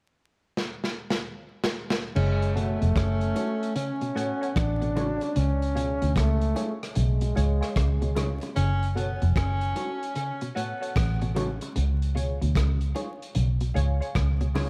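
Roots reggae at 75 BPM in F# harmonic minor, meditative and serious, where a gritty, saturated breakbeat drum kit opens with a fill before a round, foam-muted electric bass with tube saturation sits up front at 2.2 seconds, joined by a forceful, close-miked trombone melody with vibrato and tape echo, a distant tenor saxophone second line also echoed, bright clean arpeggios from a hollow-body electric guitar in the background, mellow detuned dub chord stabs with phaser, and tight, high-tuned bongos from 3.0 seconds, all over a dark production with light reverb and vinyl crackle as the chords move between F#m and C#.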